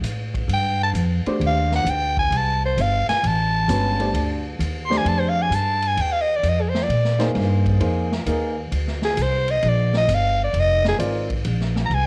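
Modal jazz at 131 BPM in 4/4 with a swung eighth-note feel, this hypnotic, spiritual excerpt is cut from a longer piece and stays on a single section built from a G9sus4 chord that shifts to Bb9sus4 at 6.0 seconds. A growling soprano saxophone takes the solo from 0.5 seconds, sitting up front with a raspy, gritty tone, subtone breathiness and vibrato, close-miked and carrying a cassette-tape coloring. Underneath, a pizzicato upright bass with steel strings sounds woody and thumpy, placed up front and running through the whole clip. A swinging big-band drum kit plays hi-hat, kick, snare and ride from a distance in a roomy studio space, with dark cymbals, a medium-tuned snare and a boomy kick, also tinted by cassette tape. A warm, natural upright piano adds accompaniment from 1.3 to 11.3 seconds, and a light studio reverb and the character of a home cassette recording tie the sound together.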